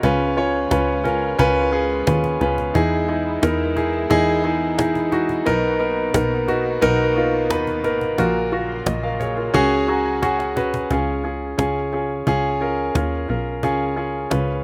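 This excerpt of hopeful, anthemic piano-driven pop opens with a clear concert grand piano, a plucky analog bass, a cajon and a studio string section all sounding together at 88 BPM in a straight 4/4, centered on Db mixolydian. The piano sits up front with a polished, present tone, deep bass and long sustain, carrying the accompaniment with a touch of slapback echo. Beneath it, the punchy, funky bass has a fast attack and decaying filter pluck, while the woody cajon, played with hard hands, sounds close and dry with faint snares. In the background, the bowed strings hold sustained chords with a reedy, gut-string, period-style color and light vibrato until they fall away at 10.9 seconds. The harmony moves through Db7, Emaj7, Cbmaj7 and Gbmaj7/Bb to a Dbsus4, where a piano fill from 9.5 seconds and a cajon fill from 10.2 seconds lead into a new section that settles on Db. The whole recording is dry, with little reverb and an open-air feel lacking any room sound.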